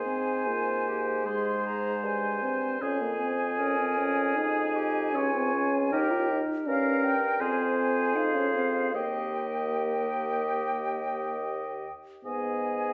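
A rubato 4/4 pulse drifts between 71 and 83 BPM in this slow, tender romantic movement for wind quintet, a short passage cut from a longer piece and tuned to A4 = 439 Hz, with all five players sounding together from 0.0 to 12.9 seconds. An airy, close-miked concert flute carries the expressive melody with vibrato and a soft attack, while a distant, roomy oboe sings the second line. A smooth-topped clarinet sits in the background and a mellow French horn with light vibrato stands up front, both as accompaniment, over a vintage-toned bassoon bass, all moving through chords from Ab to Db/F, Eb and Fm before closing on G#m, bathed in a wet scoring-stage reverb.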